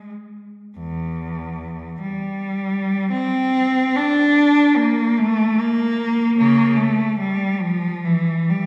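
Classical and serene with a nostalgic glow, this brief fragment of a longer piece features a single unaccompanied bowed cello, rich and focused with vibrato and a smooth top, ranging from E2 to D4 in a free, rubato 3/4 between 44 and 78 BPM, placed up front in the lingering reverb of a church or concert hall.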